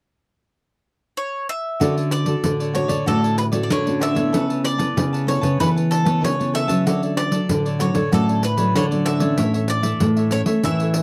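A bright, double-strung bowl-back mandolin picks the melody alone until the crisp cavaquinho, a jingly, compressed and saturated pandeiro, and two warm, fingerpicked nylon-string guitars, one of them a deep, full-bodied bass, join at 1.8 s, giving this joyful, festive samba and choro a dry, close 1970s-style studio sound with light reverb.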